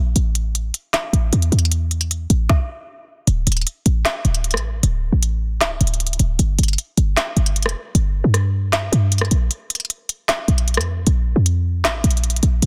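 Eerie and dark, this half-time trap excerpt at 154 BPM in D harmonic minor pairs a punchy, sine-based 808-style bass with a noise layer and fast attack, entering at 0.0 seconds, with an up-front electronic drum kit of tight kick, woody snare, smooth hats, handclaps and rim clicks, with a stop from 2.5 to 3.3 seconds and a break at 9.5 seconds, all set in digital ambience under a dense, heavily limited modern master.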